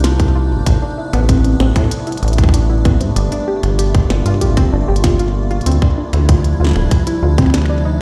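Melancholic and eerie, this 8-second IDM excerpt at 96 BPM in D minor sets an icy, crystalline glass pad with chorus and 12-bit sampler grit over warbling, lo-fi pluck arpeggios with chorus and delay, a rubbery, saturated acid bass up front, a tight electronic kick entering at 0.2 seconds, and a glitchy kit of finger snaps, clicky hi-hats and a tiny snare with delay, all moving through Cm11, Am11, Gm11 and Dm11 in a bare, reverberant room played over a big sound system.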